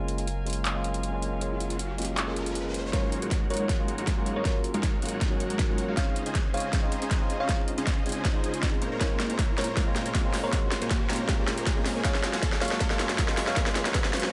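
A thick, detuned supersaw riff with a filter sweep drives this euphoric, lush half-time future bass fragment from 2.9 s, joined by a punchy overdriven kick and a big-room kit, already playing from the opening, with a huge snare, metallic hats and handclaps. Meanwhile a clean, phased tine electric piano, a very quiet bowed string section with a reedy gut-string tone, a round thumb-piano-like pluck melody in the background and a very quiet riser from 1.1 s surround a deep, mellow 808 bass that sounds only until 2.9 s.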